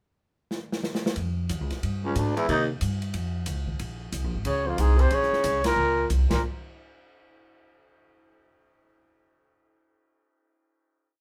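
An airy jazz kit with dark cymbals and a boomy kick opens this short, cool, swinging small-group bop piece with a fill at 0.5 s, and a woody pizzicato upright bass begins walking at 1.2 s before a mellow, distant trumpet states a bebop-style theme over an edgy, punchy baritone saxophone with vibrato in octave doubling, all in light reverb, leading to a band accent at 5.6 s and a final hit.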